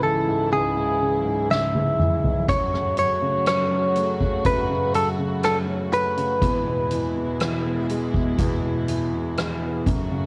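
Pop ballad at a slow 61 BPM in 4/4, longing and emotional, cut from a longer piece and moving through C#m, F#m and E with the character of a home cassette recording. A bright, twangy, clean electric guitar carries the melody up front with tremolo until 7.9 s, over an intimate grand piano with deep bass, long sustain and audible action noise, and a reedy, gut-toned string section holding bowed chords with light vibrato. A soft-mallet drum kit with a boomy kick and natural hall sound enters at 1.5 s with a fill, all set in light studio reverb.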